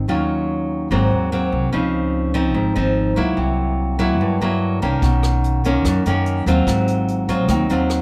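A straight 4/4 bossa nova groove at 146 BPM sets a breezy, relaxed mood in Ab major, moving through rich chords from Ebm9 and Dbmaj9 to C7#11, Bmaj9 and a closing Ab6. An up-front, fingerpicked nylon-string guitar with a classical touch carries the accompaniment from the start, over a woody pizzicato upright bass. At 5.0 s a brushed jazz kit joins with hi-hat, rim click and a boomy kick, all in a natural studio room with light reverb, in this short fragment of a longer piece.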